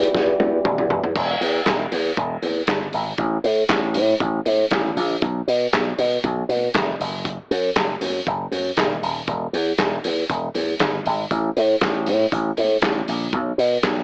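Disco excerpt in E minor at 118 BPM, danceable and driving, where a mellow French horn section holds a brief Em7 chord with cassette-tape grit until 1.1 s while a vintage drum kit plays a fill to 1.2 s, then carries on with the slap bass and congas after the chords drop out, the muffled, rolled-off kit with its punchy kick, handclaps, toms and crash sitting up front beside the bright, growly, envelope-filtered slap bass, distant low-tuned congas very quiet underneath, all wrapped in light small-room reverb and a lo-fi home-cassette, AM-radio sound.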